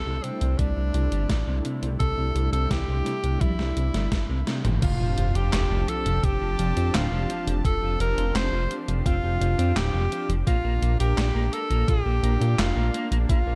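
A clear, punchy tenor saxophone with light vibrato sings the lead over a soft-attack analog pad and a glossy, up-front chorused synth bass in this uplifting, nostalgic synthwave excerpt at 85 BPM in F major, both pad and bass pumping under sidechain compression, while a dark, clean picked electric guitar riff sits in the background. A thumpy, tape-toned electronic kick and a gated 80s drum machine with handclaps, hi-hat, toms, crash and a gated-reverb snare drive the straight 4/4 groove, with a drum fill from 3.4 seconds and a band accent leading into the second section at 4.8 seconds. A sub drop then rumbles underneath until 7.6 seconds as the chords move from C6 to F6 and later Bb, all within a dark, lightly reverberant production.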